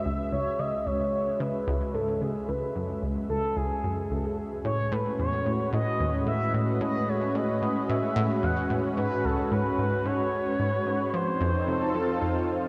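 Ambient, sequencer-driven space music in C# minor at 111 BPM, this hypnotic, cosmic excerpt cut from a longer piece drifts through C#m, A and G#m before landing on F7 at 11.1 seconds. A thick, warbling unison pad with vintage detuned character holds sustained chords alongside a round, bright analog pluck riff with tape echo, while a smooth, expressive synth lead carries the melody with vibrato, a moving notch and its own tape echo. Everything is soaked in a cathedral-sized reverb with a 5.2-second tail and a dreamy cassette-tape haze.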